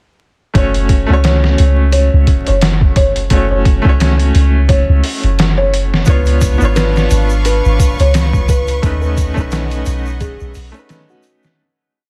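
A compressed, pitched-down sampler drum kit sits up front in this dark, smoky trip hop piece, its looped breakbeat with edits built on a thumpy kick and a medium-tuned snare under vinyl crackle. A deep, round 808-style bass plays a syncopated riff, while a brilliant, woody upright piano with audible action noise and tremolo holds drop-2 chords with syncopated pushes, and a felt-muted upright piano repeats a mellow riff melody, both pianos carrying tape echo. At 6.1 s a distant, focused chamber violin section adds a bowed, vibrato pad and a band-limited egg shaker ticks in the background, before the dense, heavily limited mix fades out from 7.9 s.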